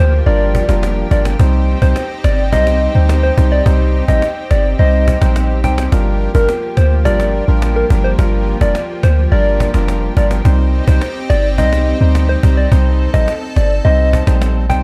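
Dancehall at 106 BPM with a sultry, bouncy mood, this dark, dry excerpt moves between Gm7 and Cm as a soft, round FM synth lead carries the melody with warbling chorus, tremolo and tape echo, over a lush detuned unison pad, a deep, boomy 808-style bass sitting up front, a hollow, percussive organ stab with ring-modulated bite, a woody cajon with faint snares, and a barely audible electronic downlifter that ends by 1.4 seconds.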